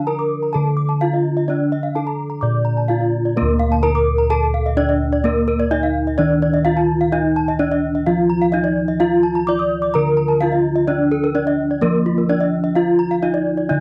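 A straight 4/4 pulse at 128 BPM drives this brilliant, shimmering fragment of Balinese gamelan in D pelog, tuned a little low, cut from a longer piece and playing one repeated section throughout its 13.8 seconds. Two bronze metallophones struck with wooden mallets sit up front with a ringing, paired-tuning beat: one carries the melody from Bb3 to D5, and the other, slightly quieter, spins arpeggios up to a high Eb6 that is 35 cents sharp. Beneath them, round, beating bossed gongs hold the bass from D2, all captured in a dry, close 1970s-style studio sound with little reverb.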